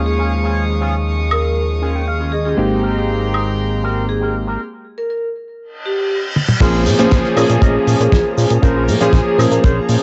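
A lo-fi home cassette recording with light reverb and a muffled top end carries this groovy, cosmic nu-disco fragment. A clangy vintage electric grand piano, a thick, detuned sawtooth bass and soft, floating bowed strings pump against the sidechain beneath a ringing hard-mallet vibraphone melody and a twangy, chorused envelope-filtered guitar riff. A dry, damped 70s drum kit with a fat snare, shaker and woodblock comes in at 1.3 seconds, a very quiet electronic reverse cymbal and downlifter appear during the break from 5.8 seconds, and a tight, up-front kick lands with the drop at 6.6 seconds.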